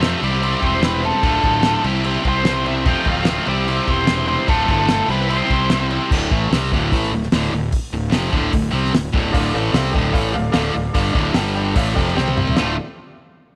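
A light studio reverb surrounds this gritty, swaggering classic rock excerpt in D minor, driven at 148 BPM in a straight 4/4 by a damped 70s kit with dark cymbals, a fat snare and a tight kick, plus a growly fuzz fingered bass. A bright, up-front distorted guitar and an overdriven semi-hollow guitar further back both play the riff, while a dark octave-fuzz lead guitar carries the melody until 5.9 seconds. A detuned, jangly honky-tonk upright piano joins at 9.3 seconds, and a drum fill at 12.2 seconds closes the passage.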